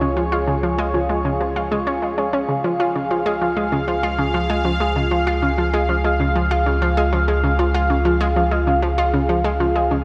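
A nasal, wave-folded analog pluck repeats its riff through chorus, analog delay and shimmer reverb above an evolving, resonant pad of sustained chords and a deep, round analog bass on a single low note, all three playing throughout this ten-second fragment of cosmic, luminous, sequencer-driven space music set in a wet, echo-heavy chamber.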